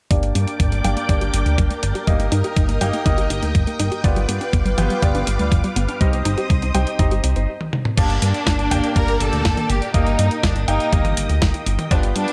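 A straight 4/4 groove at 122 BPM drives this nostalgic, bittersweet italo disco excerpt in G minor, built on a thumpy, sampler-style electronic kick and a clean 12-bit drum machine with a medium-tuned snare, hi-hat, crash and toms, both carrying a small-room character. Up front, a glossy, nasal chorused synth bass holds the low end, while a lush, vintage string machine with ensemble chorus sustains mellow chords over a progression moving from Gm through Eb/G and G7 to Cm. A punchy, detuned unison pluck plays arpeggios in the background with digital delay, and a clear, present grand piano adds stabs through a low-pass filter and delay, both parts heard under filter sweeps through the opening stretch. The arpeggios stop at 7.4 seconds, a brief stop and a drum fill lead into the next passage at 8.0 seconds, and there a rich, expressive studio violin section enters with the melody, bowed with vibrato and touched by delay. 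The mix sounds dry and close, with little reverb.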